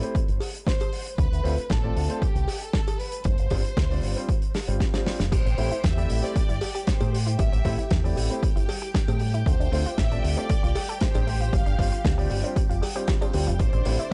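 A dark, woody violin section with tape echo carries the melody over a sidechain-pumped concert grand piano, a loose indie drum kit with dark cymbals, a punchy, up-front electronic kick, a round, envelope-filtered fingered bass and a cowbell tucked in the background, before a lush string machine and a nasal, chorused analog pluck playing arpeggios join for the drop at 5.3 seconds in this cosmic, groovy nu-disco excerpt with a gritty cassette sound.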